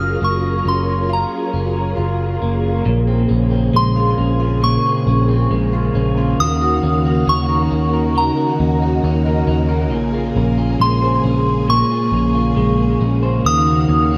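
Ethereal and hazy, this dream pop excerpt drifts at 68 BPM in 4/4 with a straight feel, set in Bb minor and cut from a longer piece. A soft, pure FM synth bell carries the melody high in its register, its decaying notes treated with chorus and dub echo, while a vintage ensemble organ-string holds sustained chords with a warbling, organ-like tone. Up front, an electric guitar at the edge of break-up picks compressed arpeggios, its slightly broken-up sound colored by subtle chorus and dub echo. A foam-muted, round vintage electric bass anchors the low end with a dark, amped tone. The harmony moves from Gbmaj7 into a longer passage beginning at 2.9 seconds that alternates Bbm9 and Ebm7. Moderate spring reverb and an echo-heavy mix wrap the whole recording in a dreamy wash.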